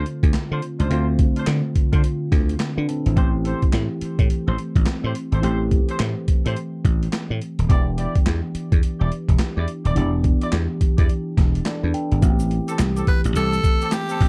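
Punchy and bouncy, this new jack swing R&B groove moves at 106 BPM in A minor with a swung sixteenth feel. It is built on a gritty, pitched-down sampler-style drum kit with a thumpy kick and high-tuned snare, a growly, foam-muted slap bass up front, clean tine electric piano through a phaser, and mellow, vintage horn stabs carrying a delay. The electric piano adds a fill at 11.4 seconds, a grainy tube shaker slips in at the back from 12.2 seconds, and a raspy, forceful tenor saxophone melody arrives at 13.1 seconds, all in a dark, dry production cut from a longer piece.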